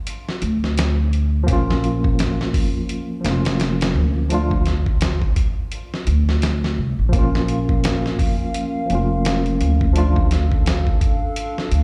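A tremolo-laced tine electric piano, worn and slightly out of tune with 12-bit sampler grit and tape echo, broods over a gritty, compressed soul sampler-style kit with a thumpy kick that drops out from 5.7 to 7.1 seconds, a woody pizzicato upright bass and, from 7.5 seconds, a dark, warbling tape-like pad, in this cinematic 85 BPM trip hop excerpt in Bb minor, swung on the sixteenths and played back through a big sound system in a bare room.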